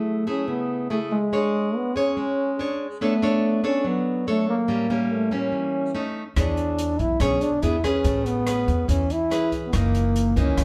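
Bossa nova with a wistful, melancholic air, this excerpt opens with a dark, forceful trombone carrying the melody up front with a light vibrato and smooth top. Beside it, a bright, fingerpicked nylon-string guitar with fresh strings and audible finger squeak moves through rich chords such as F#m9, A7b9 and Amaj9. At 6.4 s a woody, thumpy pizzicato upright bass with gut strings enters alongside a warm, dark jazz kit of hi-hat, boomy kick and rim click with a rolled-off top, all set in moderate studio reverb as if heard from further back in the room.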